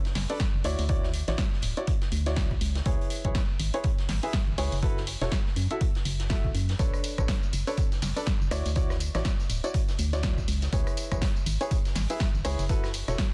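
A clear, woody upright piano carries the riff with short sustain, sidechain pumping and delay, over a hollow, organ-like FM bass with a fast, decaying attack that also pumps beneath it. This bittersweet, energetic piano house cut moves at 122 BPM with a 16th-note swing, cycling through Bm7, Dmaj9, C#m7 and F#m7 in a small room and a dense, heavily limited modern master. An up-front, dry electronic kick anchors a punchy analog drum machine of hi-hat, rim click, snare and tambourine, while a gritty, saturated garage kit sits in the background with a rolled-off top and a pumping room.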